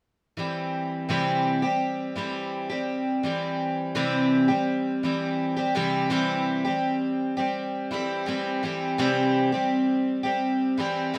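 Heartfelt and easy-going, this short pop passage in C major moves at an unhurried 84 BPM in straight 4/4. A picked twelve-string acoustic guitar carries the accompaniment from 0.4 s, its fresh, octave-doubled strings shimmering, warm, full-bodied and up front, with a touch of finger squeak. The passage shifts into a new section at 6.1 s, all set in a moderate studio ambience.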